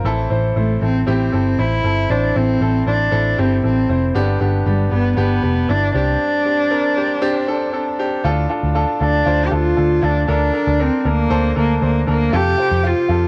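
A straight 4/4 pulse at 117 BPM drives this dramatic piano-driven pop fragment, cut from a longer piece, with a dark, round, foam-muted picked electric bass sitting up front under a brilliant concert grand whose deep low end and short sustain carry the chords from Am through G and Csus2. At 0.6 s a solo cello takes the melody, played sul tasto with a soft attack, light vibrato and an airy, intimate bow tone. The piano and cello carry a cassette-tape coloring, and moderate studio reverb frames this home recording as the harmony moves from Dm at 8.2 s through Bbmaj7/D to Fadd9.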